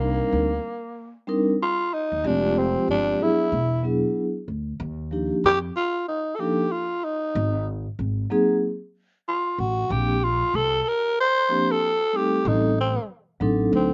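A growling, breathy tenor saxophone solo leads this mellow, nocturnal jazz-hop fragment at 94 BPM with a gentle 16th-note swing, its raspy subtone and scooped notes floating over soft-mallet vibraphone chords that ring with slow motor vibrato in a boxy small-room sound, while a woody, thumpy pizzicato upright bass on gut strings sits low beneath changes running from Cm9 to Am7b5, all in a dry, dull-topped mix that plays from 0.0 to 13.9 seconds.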